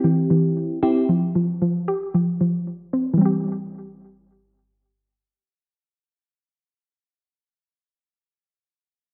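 Pop in C major at 114 BPM, nostalgic yet upbeat, with a mellow FM electric piano sounding warbling and vintage under chorus and tremolo, heard only for the first 1.1 seconds. A soft, round pluck carries arpeggios through to 7.5 seconds, full-bodied and dark with low-pass filtering and tape echo, while a filter sweep runs over the opening 3.2 seconds as the harmony moves from C to Fsus2 and back to C. A moderate plate reverb surrounds the up-front parts in a dense, heavily limited modern master, in this short excerpt cut from a longer piece.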